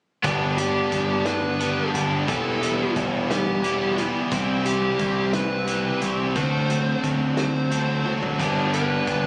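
Heard as if captured on a phone in a club, this short cut from a longer indie rock piece has a compressed, roomy sound with light reverb around the band. At a relaxed 59 BPM in a straight 6/8, the mood is upbeat and jangly as the chords move from G through Em and C to D7 before landing back on G at 8.4 seconds. Two bright, overdriven picked guitars sit up front playing riffs, one a cranked stack tone touched with subtle chorus and slapback echo, the other a crunchier part pitched a little lower. A dark, smooth lead guitar enters at 0.6 seconds with a narrow melody between G4 and C5, while a growling, overdriven picked bass anchors the low end. The loose acoustic drum kit sounds gritty and saturated, with dark cymbals, a punchy kick and a rolled-off top, and it throws in a fill between 8.1 and 8.4 seconds.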